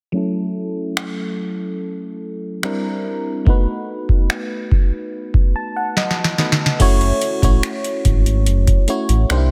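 A glassy, bell-like FM electric piano opens this sensual, late-night contemporary R&B excerpt at 72 BPM in F# dorian, its chorused tone run through a filter sweep and moving from F#m7 through C9 and B7 before a fill at 5.1 seconds. A booming analog drum machine enters at 1.0 seconds with a deep kick, crisp soft-clipped snare, metallic hi-hats, finger snaps and crash, overdriven and roomy, rolling into a fill just before a round, dark analog bass arrives at 6.8 seconds as the chords return to F#m7. The dense, heavily limited mix keeps all three parts up front under light reverb.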